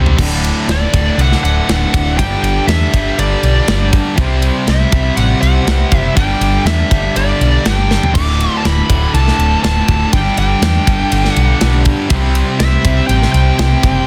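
A drum fill opens this energetic, anthemic hard rock excerpt at 121 BPM in straight 4/4. Three bright, high-gain distorted guitars play picked riffs in the background, one of them double-tracked, while a dark, round hollow-body bass sits up front with a punchy, fingered line. The tight metal kit has bright cymbals, a medium-tuned snare and a clipped kick, and it plays across crash, ride, snare and toms, with a second fill at 7.9 seconds. From 0.7 seconds a smooth, overdriven lead guitar carries a high melody through tape echo. Underneath, a very quiet, gritty tonewheel organ with a slow rotary speaker holds sustained chords as the harmony moves through D, G5 and C. The mix has a small room ambience and a dense, heavily limited modern master.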